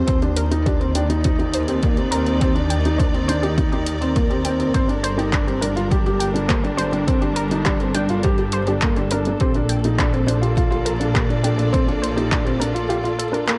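A punchy, overdriven electronic kick and a layered deep house kit of handclaps and hi-hat set a straight 4/4 pulse at 103 BPM in this hypnotic, moving piano and strings electronica excerpt in G minor, where a felt-muted upright piano plays an intimate riff through digital delay up front, a biting bowed double bass section carries the bass with sidechain pumping, a lush symphonic string section holds sustained chords with portamento over Cm7/Eb, Gmadd9 and Bbmaj7, and a warbly, lo-fi pluck plays arpeggios with chorus and delay in the background of a dark, warm production with light reverb.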